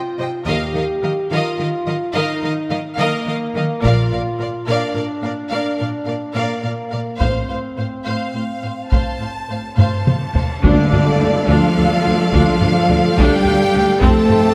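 Heavy-stick taiko drums are the loudest voice in this dark, dramatic passage from an epic orchestral film score, entering at 3.8 seconds and driving a slow 12/8 pulse at 71 BPM. Beneath them, a distant, roomy French horn section holds sustained chords while bowed string sections fill out the texture: a smooth violin melody, a clear, focused second violin line, lush viola accompaniment, and a rich cello section joined by double basses in the background. The harmony moves through Ebadd9, Bb and F/A, with a very quiet cymbal swell and tam-tam adding bright color along the way. A drum fill leads into a full ensemble accent at 10.6 seconds, where the music settles into D minor and a dark trombone section, a mellow tuba, a very quiet string section holding chords and soft-mallet timpani on D3 join in. The orchestra sits in a moderate scoring-stage reverb that lends it a sense of size.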